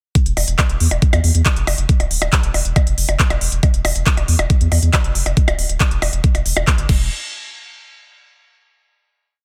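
A four-on-the-floor overdriven electronic kick and a techno drum kit of smooth closed and open hats, handclaps, crash cymbal and high bongo blips drive this short, hypnotic psychedelic trance piece from 0.2 seconds, joined a moment later by a round, dark analog bass rolling in sixteenth notes from D1 to E2, with the knocking drums up front in a dry mix before a final hit at 7.1 seconds.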